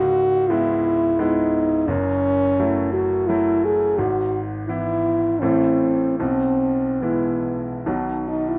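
This is a romantic classical duo for French horn and grand piano, a short tender passage cut from a longer piece and set in E major with tuning at A4 = 444 Hz. In a flexible, rubato 3/4 that moves between 71 and 89 BPM, the horn carries a warm, solo melody in its middle register, close-miked and up front throughout the 8.6 seconds. The grand piano provides bright, brilliant accompaniment across a broad span from deep bass into the horn's range, with a natural tone that also sits up front, slightly beneath the horn in level. The harmony drifts from C#m7 through F#m7 and E/G#, then darkens briefly on A minor before settling through E/B onto a B chord at 7.9 seconds. Detailed microphones and light reverb keep the sound intimate and clear.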